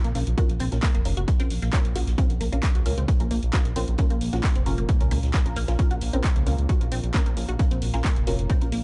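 Opening on a rumbling, detuned saw bass, a squelchy resonant blip pluck riff coated in phaser, analog chorus and tape echo, and an overdriven analog drum machine of handclaps and hi-hat, this hypnotic, relentless peak-time techno cut in Bb minor at 133 BPM brings in a muted, mellow dub chord stab with phaser and tape echo, a moody, very quiet ambient pad drone, and a faint, natural-sounding big-band kit's snare and hi-hat at 0.2 seconds, then a punchy, overdriven electronic kick up front at 0.4 seconds, with the bass, pluck and stabs pumping to the sidechain in a dark, dry mix.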